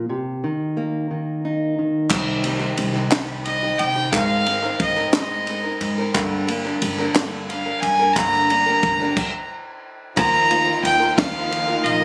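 Captured on a phone in a room with club reverb, this nostalgic, uplifting indie folk excerpt in 6/8 opens on a dark, woody fingerpicked jumbo acoustic guitar before a boxy picked acoustic guitar, a thumpy pizzicato upright bass, a dry cocktail kit with punchy kick and high-tuned snare, and hollow background handclaps join at 2.1 seconds. From 3.4 seconds a clear, earthy bowed fiddle carries the melody up front, and lush symphonic strings arrive at 10.2 seconds after a brief stop.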